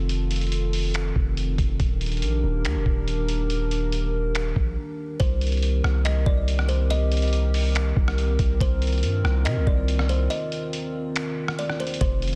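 The recording has a dense, heavily limited modern sound set in a digital ambience, with the deep 808-style bass and the drums placed up front. This ethereal, melancholic piece of atmospheric cloud-rap moves at 141 BPM in 4/4 with a half-time feel, centred on C dorian. A dark analog pad holds sustained chords from the start, its detuned, wave-folded tone softened by a slow attack, long release, subtle chorus and sidechain pumping, as the harmony moves from F7 to Ebmaj7 and later to Cm7. Beneath it, the long sine-like bass hits with a fast attack and then decays. The lo-fi sampler-style kit of finger snaps, hi-hat, rim click and a thumpy kick sounds compressed, pitched down and muffled, as if re-recorded in a large room. At 5.2 seconds a woody, plucked kalimba enters with short tape-echoed notes, and brief breaks around 4.8 and 10.3 seconds open space in this excerpt from a longer piece.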